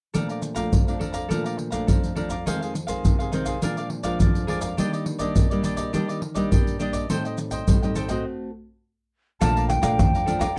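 Samba and choro in a playful, festive mood, heard in a short cut from a longer piece with a dry, close 1970s-style studio sound and light reverb. A fingerpicked nylon-string guitar sits up front with a classical touch, joined by a picked cavaquinho that sounds crisp yet mellow, both playing accompaniment over a Bbmaj7 to Fm7 and Bb7 progression moving on to Ebmaj7. Maracas, a deep surdo, pandeiro and tamborim, played with soft hands in a small room, are placed close and drive the groove throughout. A stop arrives at 8.3 seconds over an Am6 chord. At 9.4 seconds the music moves into a new section on Bbmaj7, where an airy, hollow concert flute with a straight tone and crisp attack takes the melody and a thumpy, woody pizzicato upright bass enters beneath it.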